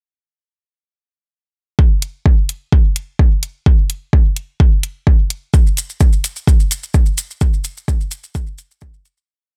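Meditative and deep, this short techno piece moves at 128 BPM in a straight 4/4, with a layered electronic kick laying down a four-on-the-floor pulse up front from 1.8 seconds and a programmed closed hi-hat, also up front, carrying hats and backbeat from 2.0 seconds. Both drum parts have a produced, small-room character. Grainy, mellow maracas enter at 5.5 seconds with close, dry, hand-played sixteenths, all set in a digital ambience as the groove fades out from 6.8 seconds.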